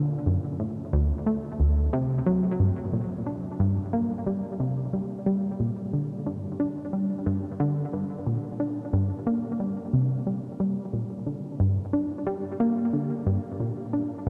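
A straight, driving 4/4 pulse at 90 BPM carries this mysterious, cosmic ambient excerpt in G minor, tuned to A4 = 441 Hz, where a tight, up-front sequenced synth plays alone from 0.0 to 14.3 s between D2 and D4, its detuned sawtooth tone shaped into a mellow filter pluck with chorus and tape echo, bathed in a huge, 8.7-second reverb within a dark production that moves into a new section at 2.6 s.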